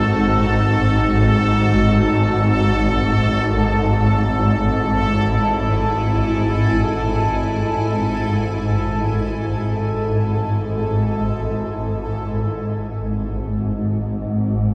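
In free time, this unsettling dark ambient drone excerpt, cut from a longer piece, centres on an up-front swarming drone of detuned sine and sawtooth tones with ring modulation and lush chorus, while a bright, cloudy granular pad holds sustained chords over F#m/G# and fades out. A bright, resonant sawtooth texture bubbles through random filter steps, and a barely audible eerie FM bell traces inharmonic, tremolo-tinged arpeggios. Everything is soaked in huge reverb with a cassette-tape haze, and at 12.0 s the other parts drop away, leaving the drone alone on a G#5 chord until 14.7 s.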